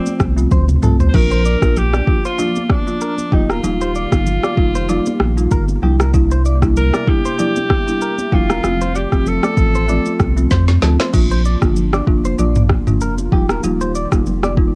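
A distant, roomy alto saxophone carries a sunny, romantic melody over dry, rustic marimba, a hollow, flute-like pad and a twangy clean electric guitar riff dressed in lush chorus and analog delay, all opening this afrobeats excerpt in Bb major at 96 BPM with a gentle 16th-note swing. An up-front electronic drum kit with a deep kick, woody snare, rim clicks, shaker and toms arrives with a round sine sub bass and very quiet high-tuned congas, and drum fills mark the phrases. The saxophone drops out at 10.5 seconds before a short closing passage, with the saxophone and drums carrying a cassette-tape grit in a homemade recording with light reverb.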